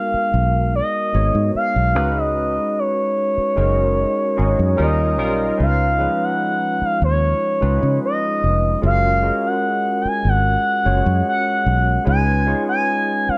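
A straight 4/4 pulse at 74 BPM carries this silky, cinematic excerpt of lush 1970s-style soul, tuned to A4 = 437 Hz and moving from G#m7 through C#7sus4 and F#69 before the second section at 5.6 seconds settles on C#7 and F#maj7. A round, foam-muted fingered electric bass sits up front beneath a bright, barky tine electric piano, lightly overdriven through a combo amp with ensemble chorus. Over them, a smooth sawtooth lead with a soft attack, a moving notch, vibrato and chorus sustains mellow notes and glides between them with expressive portamento, inside a dark, warm production with light reverb.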